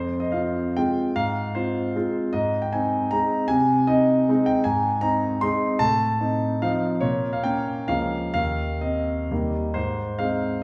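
Heard from further back in a recital hall with a generous, wet reverb, a solo concert grand piano sounds natural and up front, with a deep bass reaching down to Db2. This brief passage, cut from a longer piece, is a proud, rustic romantic classical dance in triple time, shaped with dotted rhythms and flexible rubato. The harmony begins in F minor and settles into A-flat major, arriving on an A-flat chord at 9.8 seconds before the piano stops at 10.6 seconds.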